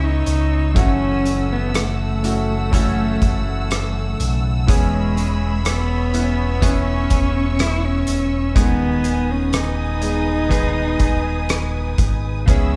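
Set in the moderate reverb of a church or concert hall, this emotional, heartbroken pop ballad moves at 61 BPM in a straight 4/4 over C#m7, F#m7, C#m7/E and G#m/D#. A close, intimate cello carries the melody with vibrato and an airy sul tasto bow. A clear concert grand with audible action noise, a lush, focused string section holding sustained chords, and clean, compressed direct-recorded electric guitar arpeggios sitting in the background support it, while an up-front sine sub bass with octave anchors the low end and a loose indie kit of tight kick, hi-hat and rim click joins at 0.3 s in a pumping room sound.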